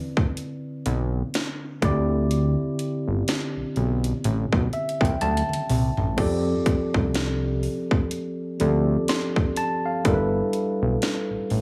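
A fat, detuned sawtooth bass with a filter sweep sits up front from 0.9 seconds, anchoring this tender, romantic contemporary R&B fragment with a gentle 16th-note swing. A worn, slightly out-of-tune tine electric piano, mellow and clean through a combo amp, carries the chords from Cmaj9 through D9sus4 and F6 to G69 and plays a fill at 4.2 seconds. An electronic trap kit, re-recorded in a large room with a hard-clipped kick, sharp snare and metallic hats, adds its own fill at 5.2 seconds, all within light reverb.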